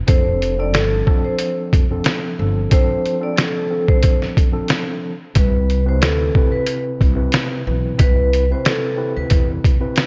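A swung boom-bap hip-hop groove at 91 BPM in C major sets a warm, confident mood, with gritty, pitched-down sampler-style drums sitting up front, a woody, growly pizzicato upright bass, a mellow tine electric piano filtered through cassette tape, and a dark, ringing vibraphone melody moving over F6 and then Cmaj7 at 5.4 seconds, all bathed in worn, warbling tape ambience in this short cut from a longer piece.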